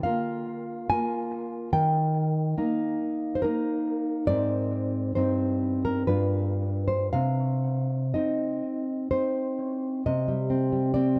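A lone nylon-string guitar opens on a Bb5 chord, its dark, full-bodied, thumb-plucked tone sitting up front as this passionate, wistful romantic piece unfolds in C minor at a rubato 55-73 BPM in 3/4. The harmony moves through Eb and Ab before settling via Cm/G and G7 onto Cm at 7.1 seconds, with the guitar spanning G2 to Ab5. Analog delay on the guitar and a moderate spring reverb lend it a deep classical glow in this short passage cut from a longer piece.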